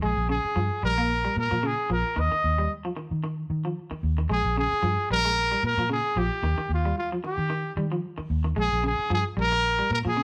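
Funky and intense, this afrobeat excerpt moves at 113 BPM in 4/4 with a 16th-note swing, sitting in Bb dorian with tuning slightly above standard. A breathy trumpet carries the melody up front, its soft attack, light vibrato and whispered, intimate pop-style tone ranging from F4 to Eb5. Beneath it, an electric guitar at the edge of break-up picks twangy arpeggios between Db3 and Bb3, sitting lower in the mix. A vintage muted fingered electric bass, dark, round and foam-muted, holds the low end from Bb1 to Eb3 with an amped, forward presence. The harmony moves from Bbm7 through a brief chordless stretch at 2.2 seconds, back to Bbm7, then to Eb and a Bb7(no3), all three parts playing throughout the roughly 10-second passage. The band sounds captured live in one room, with moderate studio reverb adding a natural sense of space.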